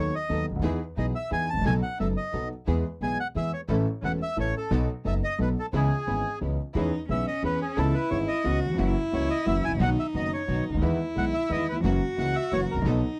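Passionate and playful, this rubato tango excerpt in 3/4 sets a reedy, smooth bandoneon melody up front over an intimate concert grand piano with deep bass and audible action noise, a thumpy, woody pizzicato upright bass on gut strings, and lush bowed string-section stabs in the background, while a single expressive cello enters at 6.7 seconds with vibrato and portamento, the whole heard in a dry, close 1970s-style studio sound.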